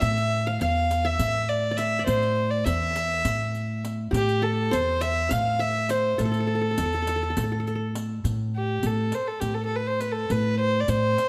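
A soulful, melancholic Turkish makam ensemble piece in 7/8, cut from a longer work, where a single dark, pure, floating violin carries the bowed melody up front over a woody pizzicato upright bass, while a plectrum-plucked, bright-edged qanun traces a second line in the background until 8.9 seconds and a close, dry riq adds dark jingles, all in light reverb.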